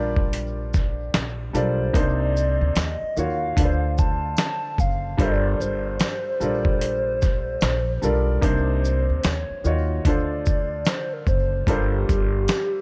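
An echo-heavy, reverberant mix frames this hazy, melancholic lo-fi hip hop excerpt in G minor at 74 BPM, swung on the sixteenths, with a gritty, compressed sampler-style drum kit of thumpy kick, medium-tuned snare, hi-hat, handclaps and shaker sitting up front under 12-bit sampler crunch. A soft, mellow felt-muted upright piano with cassette tape colouring plays the accompaniment through Gm11, Cm9, Ebm7 and Dm7 beside a woody, pizzicato upright bass on gut strings, while a warbling, detuned square-and-sawtooth lead carries the nostalgic melody through chorus, analog delay and vibrato. A jingly, bright tambourine enters in the background at 2.8 seconds.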